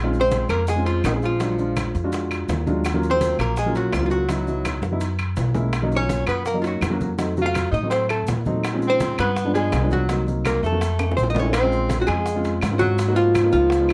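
A driving, straight 4/4 groove at 166 BPM anchors this sultry Afro-Cuban jazz piece in Bb minor. It rests on a bed of hand percussion: tight, high-tuned bongos played with hard hands and soft-handed, thick-skinned congas sit very quiet, ringing metal-shell timbales sound distant in a large room, and vintage-toned woody claves and grainy maracas stay in the background, with drum fills at 4.8 s and 11.0 s. Up front, a thumpy pizzicato upright bass with gut strings carries the low end while a natural, warm baby grand piano supplies accompaniment through rich chords such as Bbm9, Ebm9, Gb9 and F7b9. The melody belongs to a dark, clean, compressed hollow-body archtop guitar, picked and miked through an amplifier, and a bright, present tenor saxophone adds a second line with vibrato and scooped notes. Moderate reverb and a dark production round out the sound, and the passage, cut from a longer performance, keeps every part going until it breaks off at 13.9 s.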